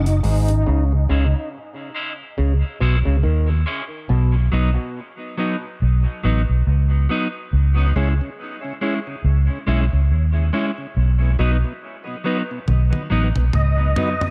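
An echo-heavy mix in a small, lightly reverberant room gives this dub reggae excerpt a deep, hypnotic feel, with a swung sixteenth-note lilt over a slow pulse. Up front sits a dark, round, foam-muted electric bass, punchy and amped, carrying the piece almost from start to finish over a patient sway between C# minor and B. An overdriven clav, stringy and percussive through a combo amp and colored by phaser and dub echo, plays a mellow riff at the opening. There is also a filter sweep in the opening break, and the clav drops out at 4.3 seconds. A clean, fingered electric guitar, high-passed and echoed, plays accompaniment throughout, joined from 7.8 seconds by a smooth tonewheel organ with key click and slow rotary speaker. The dry acoustic drum kit, heard on hi-hat and toms, appears only briefly before returning with a fill at 12.7 seconds, as a lightly overdriven lead organ with chorus vibrato and dub echo flickers back in for its short melody.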